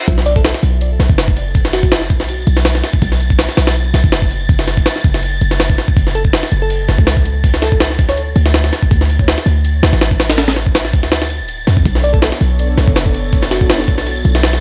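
This raw, atmospheric jungle and drum and bass cut rides a swung sixteenth-note groove in 4/4, driven by a gritty, compressed sampler-style kit with a thumpy kick, a high-tuned snare, hi-hat and ride cymbal, pitched up and sitting up front with the sound of a large room about it. Underneath, a deep, boomy 808-style sine bass with a noise layer and fast, decaying notes anchors the drop, which runs from 0.1 seconds to the end of the clip. A bell-like, sparkling FM electric piano drifts in the background in short melodic phrases, colored by chorus, cassette tape character and dub echo. A dark, wind-like tuned noise texture hovers high above from 0.8 seconds, softened by its own reverb. An airy, breathy pad with detuned sawtooth and triangle tones and a moving notch returns with mellow sustained chords around 11.8 seconds, as the harmony shifts through B5, F#m and D5 to a closing Bm9. Vinyl crackle runs through the mix, which is otherwise dry.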